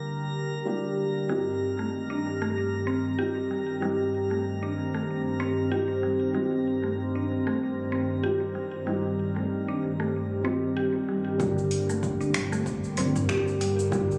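Caught on a phone in the room, this short cut from a longer piece has a roomy club reverb and firm compression. It is meditative, mystical organic downtempo at 95 BPM in 4/4, with a gentle 16th-note swing, resting on Gm and Cm/G. A thick-felt upright piano plays soft, dark accompaniment with delay and sidechain pumping. A vintage, detuned analog pad sits up front with a smooth, warbling chorus and a filter sweep. Above it floats a glassy texture of drifting overtones. From 1.3 seconds a round, woody FM pluck adds mellow, quickly decaying arpeggios with chorus and delay. At 11.4 seconds the glass texture stops, and a thumpy pizzicato upright bass on gut strings enters with a deep house kit of cabasa, finger snaps and metallic hi-hats, plus a deep, overdriven electronic kick tucked in the background.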